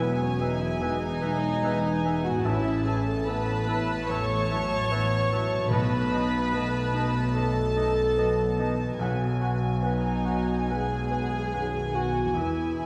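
A hopeful, tender cinematic passage opens with the whole orchestra at once: a symphonic violin section carries the melody with a soft, floating sul tasto tone, while a second violin section, a solo oboe, a very quiet clarinet and a hollow, mellow flute group weave second lines, and a clear grand piano, an intimate viola section and a ringing, thumb-plucked harp fill out the accompaniment. Dark French horns hold sustained chords above cello and rich double bass sections, and round soft-mallet timpani sound briefly at the start and again from 5.7 to 10.2 seconds under the move to B7. The rubato phrasing sits in a wet scoring-stage reverb, heard from further back in the room with vinyl crackle, in a short cut from a longer piece.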